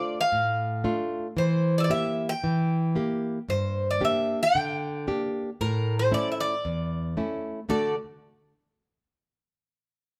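A straight 4/4 pulse at 114 BPM carries this short excerpt of Greek folk music, played by a bouzouki band in D minor with a bittersweet, moody air. The bouzouki takes the melody from the start to 7.9 seconds, its picked double strings sounding bright and metallic, with some octave-doubled strings adding sheen, and it sits up front between Bb4 and G5. Beneath it, a fingerpicked nylon-string guitar supplies the accompaniment over the same span, full-bodied and deep in a classical manner, reaching from E2 up to A4 and also placed up front. The harmony moves from Dm through Edim, Gm and A before resolving to D as the passage turns into a brief new section at 7.7 seconds. The band plays live in one large studio room, and a moderate reverb lends the performance a natural sense of space.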